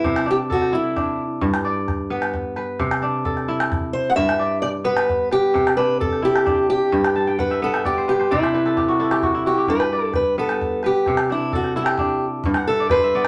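In a straight 12/8 at 87 BPM, this short West African excerpt in G major rocks hypnotically and joyfully between C and G, with a fingerpicked acoustic archtop guitar carrying the melody up front, finger squeak audible, over ringing, crisp kora arpeggios that break into fills from 7.2 to 9.7 seconds and again at 12.6 seconds, while a deep calabash keeps time from a small room beneath a wet studio reverb.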